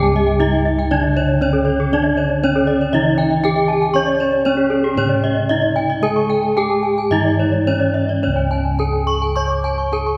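Shimmering and ceremonial, this short cut from a longer Balinese gamelan piece moves at 106-119 BPM in a straight 4/4, in a C# pelog scale tuned to A4 = 436 Hz. A bronze metallophone struck with a horn mallet carries the melody up front with a bright, ringing tone. Two more horn-mallet metallophones spin arpeggios above it: one sits forward with an airy edge, and the other sits mid-forward and reaches up to D6. Their paired tuning produces shimmering beats. Beneath them, a lower metallophone played with padded disc mallets gives mellow, soft accompaniment until 8.2 s, when the music shifts into a new section. Bossed gongs anchor the bass with a round, full, dry tone that sounds close, in contrast to the concert-hall reverb and distant perspective that surround the rest of the ensemble.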